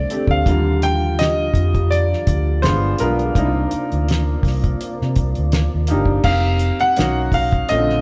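A concert grand piano with audible action noise sings an intimate melody over a clear, woody upright piano accompaniment, a lightly overdriven tonewheel organ with key click and slow rotary, and a round, foam-muted fingered electric bass, while a cloth-damped drum kit with a fat snare, tight kick and dark cymbals enters at 0.1 seconds in this relaxed, soulful neo-soul R&B excerpt at 83 BPM with a gentle sixteenth-note swing, moving from Ebmaj9 through Cm11 in a stone room's moderate reverb before the organ drops out at 6.2 seconds as the harmony shifts to F9sus4 and Bmaj9.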